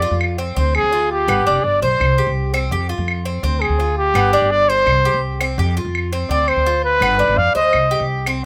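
A breathy, whispered trumpet with vibrato and a soft attack carries an intimate solo melody up front from the start of this nostalgic, sultry Cuban son and guajira fragment, over bright, metallic arpeggios from a picked tres with slapback echo and a dark, woody pizzicato upright bass, while acoustic claves join in the background at 0.2 s, all in a dry outdoor sound.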